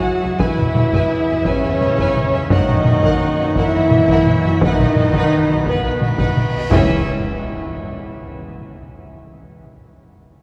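Cinematic, epic orchestral film score with a dark, epic mood, where up-front taiko drums struck with heavy sticks drive alongside mellow French horn chords, faint bright trombones and a chiffy chamber organ, while lush, vibrato-laden violins carry the melody and a second line over rich violas, cellos and double basses in a cathedral-like reverb, until a huge cymbal swell rises from 6.0 s into an impact at 6.7 s in this fragment of a longer piece.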